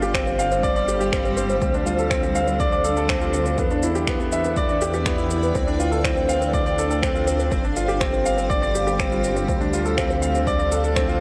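A steady, straight 4/4 pulse at 122 BPM drives this cinematic, melancholic piano and strings electronica excerpt in D dorian, where a warm, up-front grand piano riff glistens with tape echo and shimmer reverb over a blurred, evolving granular cloud pad of sustained chords, a deep, rumbling detuned saw bass pumping from sidechain compression, a punchy overdriven electronic kick, and overdriven electronic shaker and finger snaps, all set in a moderate concert hall reverb as the chords move from G7sus4 through Dm7 and Em7.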